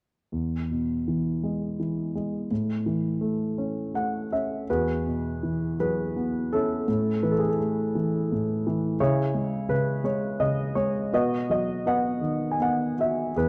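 A dark, mellow grand piano plays alone from 0.3 s in this peaceful, lyrical classical excerpt in E major, moving with rubato in 3/4 at about 83 BPM and tuned to A4 = 435 Hz, its intimate, up-front tone carrying audible action noise and short sustain across a range from E2 to G#5 as the harmony passes from E and A through Eadd9, C#m and B, framed by light reverb in a warm production.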